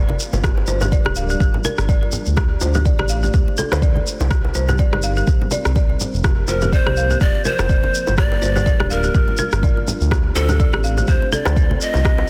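This spiritual afro house excerpt in G minor, at 124 BPM with a light swing on the 16ths, opens on a dark, detuned analog pad with chorus sitting in the background, a woody, rustic marimba playing arpeggios through a digital delay, and a smooth, mellow sawtooth synth bass, each of the three pumping against the sidechain. Moments later, hand percussion fills in: bright, close congas and tight, high-tuned bongos played with soft hands behind the groove, plus a grainy shekere. A deep, tape-warm electronic kick drives the track up front, paired with a produced rim click given soft clipping. The harmony moves through Gm7, Dm7, Cm7 and Fsus4 before returning to Gm7. At 6.5 seconds, breathy, hollow cane pan pipes take the melody, tongued with a soft chiff and vibrato and trailed by a digital delay. Light small-room reverb surrounds the parts, and the master is dense and heavily limited.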